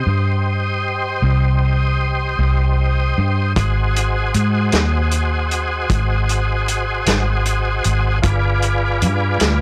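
A tonewheel organ holds smooth, sustained chords through a slow rotary speaker and chorus vibrato, while a dark, round, foam-muted electric bass sits up front beneath it from the very first moment. This is a smoky, soulful slow blues in C harmonic minor, moving at 51 beats per minute in a straight 12/8 feel. The harmony opens on Cm, shifts to Ab7, and reaches G7b9 at 8.2 seconds. At 3.6 seconds a warm soul drum kit enters with hi-hat, a medium-tuned snare and a tight kick carrying soft clipping, its sound mid-forward with a rolled-off top. The whole recording is blown-out and overdriven, with light reverb, and the passage is cut from a longer piece.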